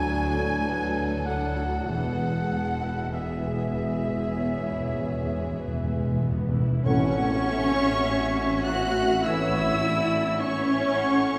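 Classical orchestral music in a slow, rubato romantic movement, warm and serene, cut from a longer piece, with a rich, vibrato-laden violin section carrying the melody over a second violin line, a lush viola section, very quiet cellos and focused double basses, while a pure silver flute, smooth oboe and dark clarinet weave secondary lines in the background and a very quiet, mellow thumb-plucked harp rings out arpeggios. Dark, distant French horns and warm trombones hold sustained chords until 9.7 seconds, and hard-mallet timpani, articulate and dry, play a fill from 1.9 seconds. At 6.9 seconds the band strikes an accent as a solo trumpet enters with stabs alongside a very quiet tam-tam, all set back in a wet scoring-stage reverb.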